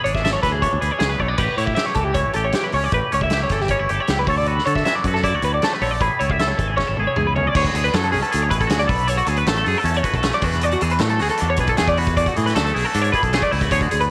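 Math rock and midwest emo at 156 BPM in 4/4, this intricate, wistful passage cut from a longer piece sets bright, chorus-and-tape-echo twelve-string arpeggios up front over a clean, twangy electric guitar bathed in spring reverb, a bright, direct fingered bass and a loose, distant indie kit with dark cymbals and a punchy kick. A drum fill at 1.2 seconds comes as the harmony moves from E7 through A7, D and Amaj7, and a second fill from 6.8 seconds leads into a second section on Dmaj9#11 and E9sus4 from 7.5 seconds.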